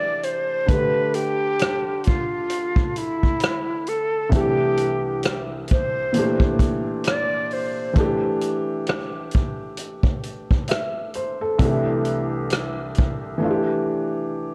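Worn, warbling old tape gives this melancholic, hazy lo-fi hip hop cut its character, with a warbly pitch drift, a faint mains hum and a moderate spring reverb hanging over the whole thing. It sits at a slow 66 BPM in 4/4 with a swung sixteenth-note feel, in A minor. A breathy, hollow jazz flute with vibrato and a soft attack carries the melody between E4 and D5, dulled by a low-pass filter, and falls silent at 8.0 seconds. Underneath, a felt-muted upright piano supplies intimate, mellow accompaniment across a broad range from C2 to E5, its action noise audible through a cassette-tape coloring, and it plays until 14.5 seconds. A vintage acoustic drum kit enters at 0.2 seconds with hi-hat, rim click and a punchy kick, sounding natural in a studio room. The harmony drifts among A7sus4, C6 and a Bbmaj7#11, returning to A7sus4 as this fragment of a longer piece ends.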